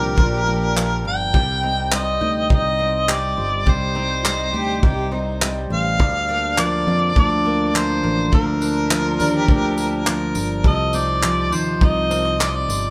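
This is a live-sounding recording of a band playing together in one room, with a moderate studio reverb giving it a natural, intimate glow. It is an easy-going, heartfelt acoustic pop piece, cut from a longer track, with a straight, relaxed feel in 4/4. Up front, a warm, vintage-toned harmonica carries the melody with vibrato and scooped notes, and a touch of delay trails its punchy phrases. Beneath it, a pure, slightly nasal cello plays a soft-edged, floating second line, bowed sul tasto, until it falls away at 9.9 seconds. A plugged-in steel-string acoustic guitar provides picked accompaniment, while a bowl-back mandolin ripples double-string arpeggios in the background. A growly, round fingered electric bass anchors the low end, and a cloth-damped, thuddy drum kit with a tight kick, handclaps and tambourine sits prominently in the mix with a rolled-off top, underpinning a gentle progression from Bb6 through Cm to F7.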